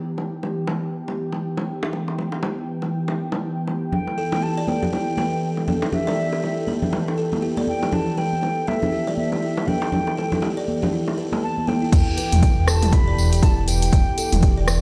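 Afro house with an earthy, driving mood, cut from a longer piece, opens on a detuned analog pad with chorus and sidechain pumping, joined by tight, high-tuned bongos. At 3.9 seconds an airy, distant jazz flute with vibrato and tape echo enters alongside ringing congas, and moments later a woody, buzzing kalimba plays arpeggios through pumping and echo. The drop at 11.9 seconds brings in a dark, smooth synth bass, a punchy electronic kick up front, a deep house kit with dark hats, crash, rim click and toms, and a jingly tambourine, all heard in a bare stone room on a big sound system.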